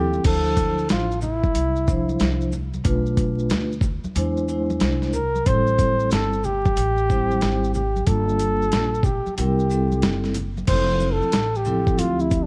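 A breathy, intimate flugelhorn carries the melody over mellow soft-mallet vibraphone and woody pizzicato upright bass from the start, joined by background congas and maracas and a gritty, overdriven sampler-style drum kit with a thumpy kick in this cool, warm jazz-hop excerpt at 92 BPM with a swung feel, dry and dusted with vinyl crackle, moving from Dm9 through Bm7b5 and Eaug7 to Fmaj7, where the flugelhorn takes a close-miked solo at 10.7 seconds.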